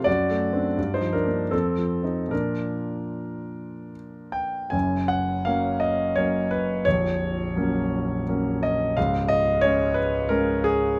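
Closely miked in a dry room, this short passage from a longer work puts a clear, intimate grand piano up front, with the clatter of its action audible beneath the notes. It is a romantic character piece for solo piano in 3/4, moving at roughly 72-90 BPM with a flexible, rubato feel and a warm, lyrical mood. The opening phrase sits in Bb major, passing through D7/F#, Gm7 and F7 before settling on Bb. At 4.7 s the music shifts to F# major for a contrasting second part, lingering on F# and F#/A# before reaching C#5 at 9.0 s. The piano spans from deep A#0 up to G#5, and its natural, detailed tone carries the whole 11-second fragment.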